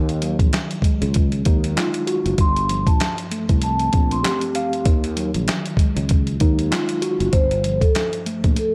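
A mellow, clean tine electric piano, filtered and heard through its built-in speakers, opens this moody, reflective boom-bap hip-hop excerpt alongside a bright, growly fretless bass with analog chorus, while a dusty, gritty sampler-style drum kit of thumpy kick, medium-tuned snare, hi-hat and handclaps sits up front with a tape-warm, compressed character and a swung sixteenth-note feel. At 2.4 seconds a filtered vibraphone played with soft mallets takes the melody, its metallic ringing tone carrying a slow motor vibrato over minor eleventh chords that move to a suspended ninth near the end. The mix is dry, with little reverb.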